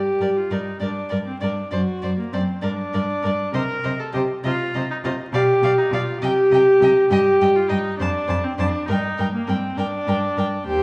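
Vinyl crackle and a small room's ambience sit over a wet scoring-stage reverb in this cut from a longer, quick classical-period movement for string quartet, cheerful and graceful in G minor, moving in a rubato 6/8 at 67 BPM. A warm, up-front viola begins the accompaniment at 0.0 seconds, and a nasal, distant-sounding yet forward cello carries the bass. Two reedy gut-strung violins with light period vibrato play in the background, the first singing the high melody and the second adding a rich inner line.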